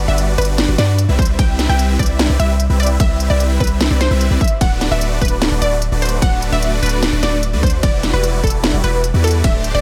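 A half-time 4/4 pulse at 149 BPM drives this bright, euphoric future bass excerpt, where huge, lush detuned supersaw chords with phaser and sidechain pumping move from Gmaj7 through Cmaj7 and Bm7/D to Em9, a deep, mellow 808-style bass with tube saturation sits up front, a punchy unison pluck with delay carries the melody, a trap kit adds a sharp snare, crisp hats and ride cymbal, and a hard-clipped electronic kick enters at 1.2 seconds, all in a dry, close sound.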